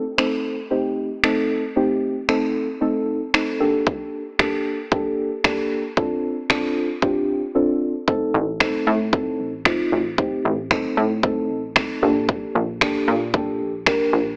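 The recording has an AM radio sound with a light reverb, giving this energetic yet bittersweet dance-pop fragment, cut from a longer piece, a lo-fi sheen. At 114 BPM in a straight 4/4, a deep, mellow chord stab carries the harmony in G minor from the start. Its soft, full-bodied, slightly nasal tone is plucked with a fast attack and decays, thickened by chorus and pumping through sidechain compression. Up front, an electronic, layered pop drum kit of finger snaps and a punchy, tape-warm kick drives the groove. The chords move through Adim, Gmadd9/Bb and Dm7 before a brief silent gap at 7.6 seconds. When the pattern returns, a plucky analog bass enters at 8.3 seconds, its funky, wave-folded and ring-modulated sawtooth tone snapping forward and pumping with the same sidechain motion.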